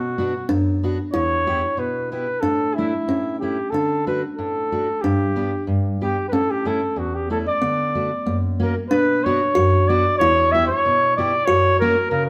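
A moderate stone-room reverb surrounds this short cut from a longer alpine folk tune, played live in one room by an alpine dance band. At 93 BPM in a straight 2/4, the mood is jolly and bouncy, opening in D major before turning to B harmonic minor at 8.9 s. A warm, distant flugelhorn carries the melody up front in a classical style, its roomy tone leading throughout. Beneath it, a full-bodied dreadnought steel-string guitar is fingerpicked as accompaniment, also sitting forward in the mix. A kalimba adds a quieter second line, its woody, hollow-box thumb plucks short, close-miked and dry. The chords move through Bm, Em, A, D and G, and the closing minor passage leans on Bm, Em and F#, with all three parts sounding from the start to 12.3 s.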